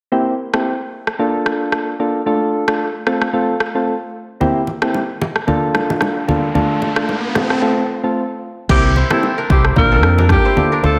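Sunny and romantic, this dreamy afrobeats excerpt opens on mellow, warbling electric-piano-like synth keys with chorus over a deep house drum kit with a deep kick, crash and rim click, adds ringing congas and bongos from 4.4 seconds, and brings an electronic riser into a break before a vibrato-laden alto saxophone with tape echo, a crisp fingerpicked kora and a round, punchy fingered electric bass all arrive at 8.7 seconds, the whole mix soaked in plate reverb.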